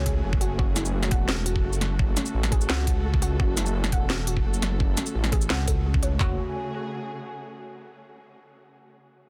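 A digital ambience and a dense, heavily limited master frame this tense, spacious half-time drum and bass excerpt at 171 BPM in F# minor, where a deep, rumbling detuned saw bass sits up front beneath a cracking, softly clipped snare with crisp hi-hats and shaker from a layered electronic kit, joined by a trap kit's knocking kick, handclaps and toms, while a warbling, lo-fi pluck spins chorused, cassette-tinged arpeggios through digital delay and a woody, lush string section holds sustained chords with 12-bit sampler grit and sidechain pumping, carrying on alone after the other parts stop by 6.4 seconds.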